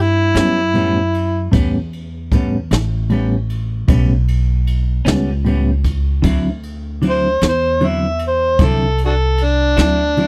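A dry, close small-room sound with a 1970s studio character frames this soulful, rollicking slow blues excerpt in 12/8 at 51 BPM, which moves from an A9 chord to D9 at 6.2 seconds. An overdriven, amplified harmonica takes a gritty solo from the start, with light vibrato and tongue slaps, over a woody, bright pizzicato upright bass on steel strings. An airy brush kit with dark cymbals, a medium-tuned snare and a boomy kick joins alongside a clean, compressed, picked electric guitar colored by harmonic tremolo.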